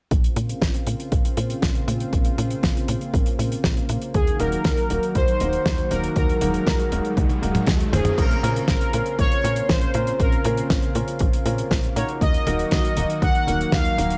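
Bittersweet and nostalgic, this italo disco excerpt pairs a lush, detuned unison pad and a tight, ring-modulated sequencer bass with a damped 70s drum kit with a fat snare and a punchy electronic kick, then brings in a bold, wave-folded analog synth brass melody with tape echo at 4.1 seconds, gritty sampled baby grand piano stabs, and a very quiet riser that overlaps the drum fill, all under vinyl crackle and a dry, small-room sound.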